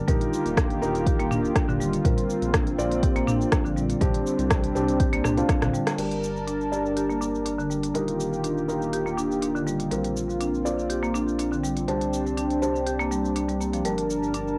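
Spiritual and hypnotic, this afro house excerpt layers a soft, detuned analog pad's sustained chords with thick-felt upright piano stabs and dark, woody marimba arpeggios, all pulsing under sidechain pumping over a deep, rumbling detuned saw bass. An afro-pop kit of crisp hats, rim clicks, shaker, toms and crash sits beneath an up-front electronic kick that drops out at 5.6 seconds, just as a drum fill and band accent lead into a section where filter sweeps move across the marimba and piano. The whole piece carries the tape-worn character of a cassette home recording with light reverb, and the piano and marimba trail echoes from analog delay.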